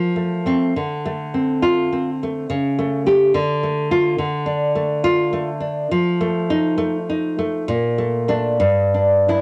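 In a rubato 6/8 at around 69 dotted-quarter beats per minute with uneven beats, this passionate, wistful excerpt from a longer romantic piece for solo classical guitar features a full-bodied, fingerpicked nylon-string guitar, set up front with audible finger squeak and light reverb in a studio-ambience home cassette recording, as it moves through F, Dm7 and A7/C# into D minor from 4.2 s before drifting to F7, Bbmaj7 and Em7/G.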